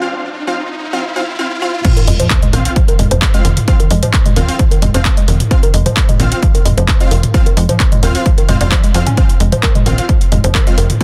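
Industrial and intense, this driving peak-time techno excerpt runs at 131 BPM in a straight 4/4 in F minor, tuned slightly low. It opens on a short break where an aggressive, thick rave stab, bright and detuned with chorus, reverb and digital delay, sounds over a riser and sub drop that carry the build-up. At 1.8 seconds the drop hits with an impact. An up-front, heavy electronic kick arrives alongside a layered kit of crash, handclaps, tape-warm hats and toms, all re-recorded in a small room. A woody, wave-folded pluck riff with a warbling, vintage tone and a noise layer enters at the drop, and a tight, nasal sawtooth sequencer bass joins at 2.1 seconds. The stab, pluck, bass and parts of the kit pump against the kick under a dense, heavily limited master with little reverb.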